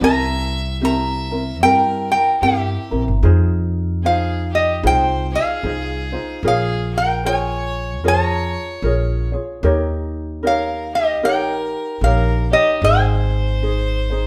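Relaxed and languid, this Hawaiian excerpt ambles along in an easy swung 4/4, cut from a longer piece and running about 14.3 seconds. A lap resonator guitar carries the melody up front, its slide tone metallic and nasal as it is played with fingerpicks. A clear fiddle, bowed by a single player, adds an earthy second line beneath it with a smooth top. A thumb-plucked ukulele supplies light accompaniment, while a pizzicato upright bass with steel strings sits up front, woody, dark and thumpy. The chords move from C7 through Fm7, Bbm7 and Eb7 before settling on Ab, and the band plays live together in one room with a wet studio reverb around them.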